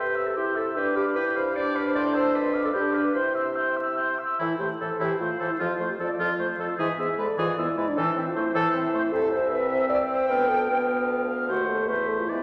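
An airy concert flute with expressive vibrato carries the melody of this quick, restless and urgent classical-period wind quintet movement in a rubato three-four, joined by an up-front oboe singing a second line, a mellow, roomy clarinet and a warm, close-miked French horn with a soft attack filling in the accompaniment, and a punchy, distant bassoon with light vibrato holding the bass, the ensemble sitting in a wet scoring-stage reverb with vinyl crackle beneath it.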